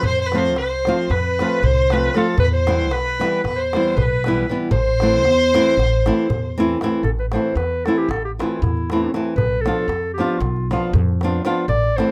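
A straight 9/8 at 232 BPM in eighths drives this fiery, restless Balkan wedding-band cut in A minor, where a smooth-topped classical clarinet carries the melody up front and takes a solo from 7.0 seconds, a rich, focused bowed violin with vibrato sits distant as a second line until 6.5 seconds, a fingerpicked acoustic flamenco guitar with audible finger squeak accompanies close up, a woody, growly pizzicato upright bass thumps darkly beneath, and a clay-shelled natural-skin darbuka stays in the background of a moderate studio room.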